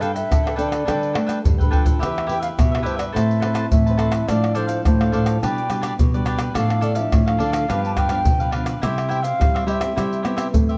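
Playful and lively, this samba and choro excerpt at 106 BPM in 4/4 carries an airy, wooden baroque flute melody with vibrato and a crisp attack over a picked cavaquinho, a small, thumb-plucked nylon-string guitar accompaniment and a dark, classical nylon-string guitar bass in the background, while close, dry egg shaker, pandeiro, tight surdo and tamborim played with soft hands sit up front and add a drum fill at 1.2 seconds, the whole set in light reverb over chords moving from Gadd9 to C.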